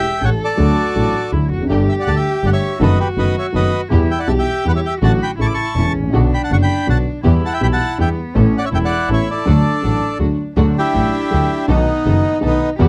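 A reedy bandoneon opens this nostalgic, elegant tango excerpt, carrying the melody up front, while a warm, intimate cello plays a bowed second line beneath it, sul tasto with a soft attack and light vibrato. Almost at once a mellow, woody upright piano, slightly detuned, fills in the accompaniment, and a bowed double bass anchors the low end with a clear, intense tone, a smooth top and its own light vibrato. From 1.7 seconds a muted studio string section adds very quiet stabs, veiled and lush, played con sordino with vibrato. The music sways in a rubato triple metre, moving through a longing progression that leans on Gsus2, B7/F#, Em and Aadd9 before a shift into a new section at 10.6 seconds brings a B7. The sound is nearly dry, with a dark, warm production.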